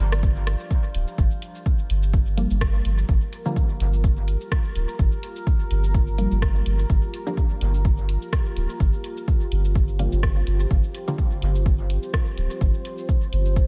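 Dub techno at 126 BPM in G minor, cut from a longer piece, with a cavernous, deep mood and a lightly swung 16th-note feel. A round, soft sub bass sits up front from the start, pumping against an overdriven, punchy electronic kick that arrives at 0.2 seconds, while an analog drum machine adds dry hi-hat, rim click and shaker touched with small-room reverb and dub echo. Beneath them a moody sawtooth pad holds sustained chords with slow attack, chorus and its own reverb, breathing with sidechain pumping. A glassy texture of drifting overtones floats in the background only until 1.2 seconds, where the harmony settles from G7(no3) onto Gm7. From 2.4 to 11.3 seconds a muted, full-bodied chord stab with a filter pluck and short decay pulses with sidechain pumping, colored by phaser and dub echo, all set in a digital ambience.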